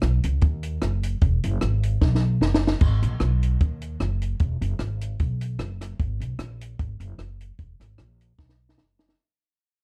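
An upright bass and a compact cocktail drum kit start together on this mischievous, energetic ska cut from a longer piece, swinging lightly at 151 BPM in G minor's sharp cousin, G# minor. The pizzicato bass sits up front with a woody, steel-strung tone, while the dry, tight-booth kit pairs a high-tuned snare and tight kick with dark cymbals, rim clicks, hi-hat and crash. Drum fills land at 2.0 and 8.4 seconds, and the whole track fades out from 2.8 seconds in a dark, close, nearly reverb-free mix.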